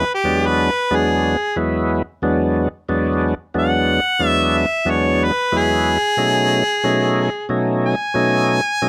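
A lightly swung 16th-note groove in 4/4 carries this rollicking, soulful blues fragment from a longer piece, where a bright, overdriven harmonica sings the up-front melody with light vibrato and scooped notes in a pop style, while a thick, gritty tonewheel organ with key click and a slow rotary speaker holds down full accompaniment from E7 to B7 at 6.2 seconds, all captured in a dry, close 1970s-style studio sound with light reverb.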